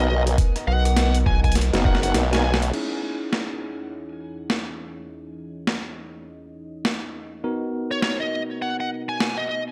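A swung 16th-note groove at 102 BPM in 4/4 drives this funky, swaggering glitch hop cut in C# dorian. It opens on a drop where a gritty, pitched-down boom bap sampler kit with a high-tuned snare, a thumpy electronic kick, a chorused formant-sweep wobble bass and a brief rubbery square bass hit hard up front, with a drum fill and band accent closing out the first 2.7 seconds. Beneath it, a deep, detuned analog pad with chorus and sidechain pumping holds sustained chords under clean tine electric piano stabs soaked in tape echo, moving from Bmaj7 to C#madd9 and back, while a bright, overdriven lead guitar carries the melody with 12-bit sampler grit, returning at 7.9 seconds in an echo-heavy mix with light reverb.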